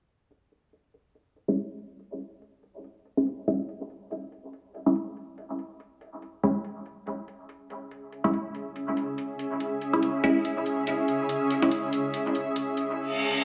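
Cavernous and heavy, this deep dubstep excerpt moves with a swung, half-time feel, as metallic, tape-warm electronic hi-hats run from 0.3 s beneath muted, detuned dub chord stabs that carry phaser, dub echo and a filter sweep. A cloudy, granular pad with its own built-in reverb blooms in at 8.2 s, and an up-front reverse cymbal closes the passage at 13.1 s. The whole mix sits in a wet echo chamber with a low-pass filter and small room ambience.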